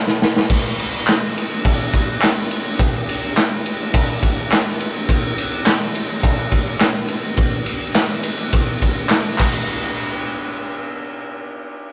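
Swaggering and rowdy, this straight-feel rock cut opens on a drum fill before a raw garage kit of punchy kick, medium-tuned snare, ride and crash pushes up front with a gritty, saturated, pumping stone-room sound and a rolled-off top, joined at 1.1 seconds by hollow, band-limited vintage group handclaps in a rough rehearsal-room recording with light reverb.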